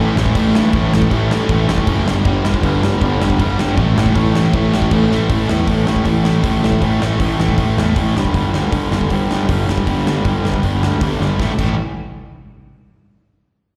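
Punk rock with a rebellious, energetic drive, this is a short cut from a longer piece in a straight four-beat feel, heard as a live gig through a venue's sound system with the reverb of a recital hall around it. A dark, overdriven guitar sits up front with the main riff alongside a bright, tight distorted guitar carrying slapback echo, while a warm, double-tracked fuzz guitar adds a very quiet layer under them until it stops at 5.3 seconds. A growly fuzz bass, direct and amped, holds down the low end throughout. The acoustic drum kit, up front in a big room sound, drives the music with a punchy kick, a medium-tuned snare, hi-hat and bright crash cymbals. The harmony moves between A and G, shifting to power chords in the second part, and drum fills at 5.1 and 11.2 seconds mark the turns into each new section.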